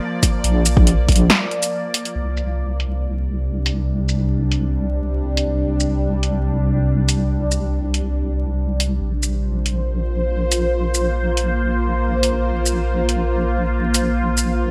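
Half-time 4/4 at 140 BPM drives this meditative, brooding deep dubstep excerpt: an overdriven electronic kick thumps up front from 0.2 to 1.2 seconds, while a filtered deep house kit of hi-hat, shaker and punchy snare, also overdriven and re-recorded in a small room, runs from 0.2 to 14.5 seconds, with a short break before a filter sweep opens on the drone at 2.2 seconds. Beneath it, a deep, dark wobble bass of square and sine tones, compressed and chorused, sustains low. A tense, string-like bowed drone of detuned sawtooth voices with a noise layer, vibrato, phaser and built-in reverb holds bright sustained chords around Bb and C over a vinyl crackle.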